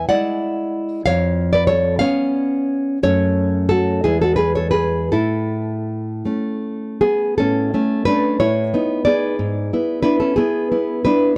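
Romantic solo classical guitar in A major, played with tender, sunny rubato at a slow lilt of 52-64 dotted-quarter beats in 6/8. The nylon-string guitar is fingerpicked and up front, its dark tone spanning E2 to F#5 with audible finger squeaks, captured in a dry, close 1970s-style studio sound with small-room ambience. Cut from a longer piece, the passage moves through E, C#7/E#, F#m and A before a second section from 7.4 seconds turns toward B7/A and E7/G#.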